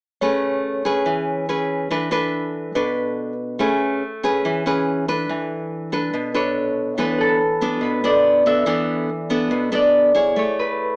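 A straight 4/4 bossa nova pulse at 142 BPM sets a relaxed, sunny mood in this short piece, cut from a longer performance. A deep, classical-toned nylon-string guitar is fingerpicked up front throughout, carrying the harmony as it moves gently between Amaj9 and E7sus4 before settling on Amaj7 near the close. In the background, a bright, bell-like tine electric piano adds clean, direct accompaniment, dropping out at 3.8 seconds and returning at 7.2 seconds. A concert harp enters at 6.4 seconds to take the melody, its fingerpicked notes ringing with a warm acoustic glow in a high register. A moderate large-studio reverb and a small-speaker sound give the recording an intimate, slightly boxy character.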